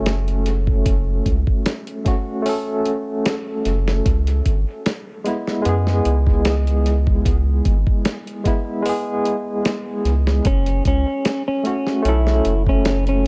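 Hypnotic and dark, this trip hop excerpt moves at 75 BPM in 4/4 with a light swing on the sixteenths, sitting in F# minor and tuned slightly flat of standard pitch. A barky tine electric piano carries the accompaniment throughout, lightly overdriven and colored by tremolo, 12-bit sampler grit, tape echo and a low-pass filter that sweeps across its whole span. Underneath, a round analog bass with a deep, sustained tone and tube saturation holds the low end, while a dusty soul sampler-style drum kit supplies a thumpy kick, medium-tuned snare and hi-hat, compressed and treated with dub echo. At 10.5 seconds a clean, fingered electric guitar enters with a short melody, its tape echo adding to the echo-heavy, dry-room mix. The harmony moves from F#m to C#m7 at 4.1 seconds and back to F#m as the guitar arrives, with every part placed up front.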